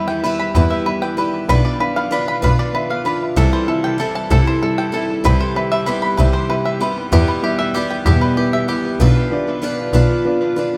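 Folk in 6/8, stirring and bittersweet, where a worn, woody upright piano with audible action noise and a shimmering, octave-doubled twelve-string guitar, both steeped in dub echo, carry chords through Em, Bdim, Am7/C and Cmaj7; a twangy, fingerpicked banjo adds echoing arpeggios until 9.0 seconds, and a focused, bowed double bass with vibrato sits up front from 0.6 seconds in this short excerpt of a lightly reverberant, echo-heavy mix.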